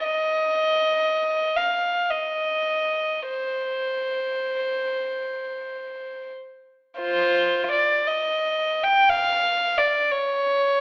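A lone violin, played sul tasto with a soft attack and an airy, floating bow, carries this brief, lonely classical fragment, its pure tone sitting close and up front as it moves between F4 and G5. The rubato pulse drifts freely in 3/4 at roughly 39-62 BPM, with a contrasting second passage arriving at 7.0 seconds and the phrase breaking off at 10.8 seconds, cut from a longer piece. A moderate recital-hall reverb surrounds the mournful line, while a narrow AM-radio coloring gives it a faded cast.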